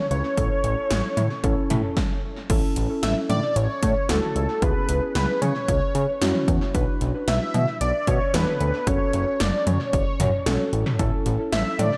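An echo-heavy mix with a moderate plate reverb gives this nocturnal, driving synth-pop clip, cut from a longer piece, a deep and shadowy sheen. At 113 BPM in a straight 4/4, the 80s electronic pad drums sit up front, with a punchy kick, metallic hats, crash cymbal, and a gated reverb on the snare and toms, plus a touch of tape echo. A fat analog bass, thick and nasal with a saturated sawtooth and square-wave bite, drives the low end alongside muted, felt-like synth keys that sound soft and intimate, their dark chorus and ring-modulated noise layer tucked behind. Over them, a bold, detuned unison lead with a sub octave carries the melody in a mellow tone, its vibrato and moving notch colored by tape echo. After a brief stop from 2.0 to 2.5 seconds, the music moves into a new section whose harmony runs from A through C#m, Bm and F#m before returning to A.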